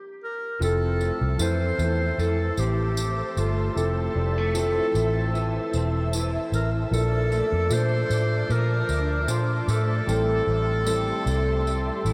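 A close-miked clarinet with a clear, classical tone carries the melody up front, entering alone at 0.2 seconds before the band joins at 0.6 seconds. This wistful, hazy bedroom pop excerpt moves at 76 BPM in 4/4 with a light swing, drifting from Fmaj7 to Bbmaj7 and on to Am7. Beneath it, a dark, round, foam-muted electric bass sits prominently, while a slightly broken-up guitar through a small old amp wobbles with warbly pitch drift, and an upright piano with audible action noise and woody tone adds a cassette-tape softness in the background. An ethereal, detuned pad of triangle and sawtooth layers arrives at 1.2 seconds, holding sustained chords high above, and a jingly tambourine keeps time at a low level. The whole dreamy mix is soaked in a huge ambient reverb.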